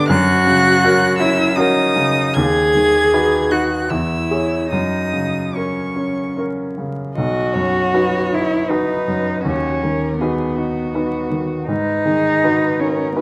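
A bowed violin carries the melody from the first moment, its tone smooth and even with vibrato, its line reaching into its upper register. This is a slow, tender romantic movement for piano trio in B major and 3/4 time, moving at 72-82 BPM with a flexible rubato feel, and the recording is cut from a longer piece. Close beside it, a rich-toned cello plays a second line up front, expressive and soft in attack, sliding between notes with portamento and vibrato. A clear baby grand piano, also up front, supplies an open accompaniment with short sustain, ranging from deep bass notes to the middle of the keyboard. The harmony moves from F# through B/D# and C#m/E, then a new section at 7.2 seconds settles on B and darkens toward G#m7 at 11.7 seconds. A moderate recital hall reverb surrounds close, detailed microphones, and a vinyl crackle adds an intimate, warm patina.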